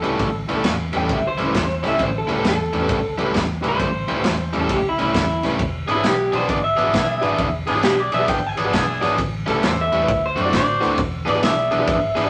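A swung shuffle at 134 BPM in 4/4 drives this laid-back, rollicking electric blues excerpt, with a raw garage kit of boomy kick, medium-tuned snare and ride cymbal sounding gritty and saturated in a small, pumping room with a rolled-off top. Under it, a foam-muted fingered electric bass adds a round, punchy low end, while a bright, crunchy overdriven guitar sits up front with a picked riff. Throughout, a fingered guitar solo through a small old amp carries the melody, its tone slightly broken-up, lo-fi and compressed. Tucked in the background, a dark, woody upright piano, slightly detuned and worn, comps with its action noise audible. The harmony moves from A7 to E7 at 5.6 seconds, then back through A7 and D7 to E7, and at 5.9 seconds a warm, distant horn section joins with tight, roomy jazz-style stabs, all set in a moderate studio reverb.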